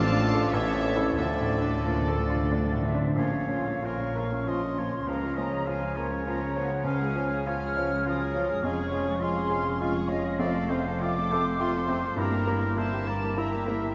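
In a rubato 3/4 at around 85-105 BPM, this brooding, passionate classical passage, cut from a longer piece, moves from D minor into Bb minor at 3.2 s, with a clear baby grand piano carrying the melody alongside a soft-attack violin section bowed sul tasto in the background. Oboe with light vibrato, a very quiet clarinet, an airy flute group and a second, warm violin section weave the second lines, while a woody, lush viola section and a bassoon fill the accompaniment, a distant, dark French horn section holds sustained chords, and cello and double bass sections anchor the bass. Timpani with medium mallets sound only from 1.2 to 3.1 s, and a wet cathedral reverb places the ensemble in a vast, echoing space with a dulled top end.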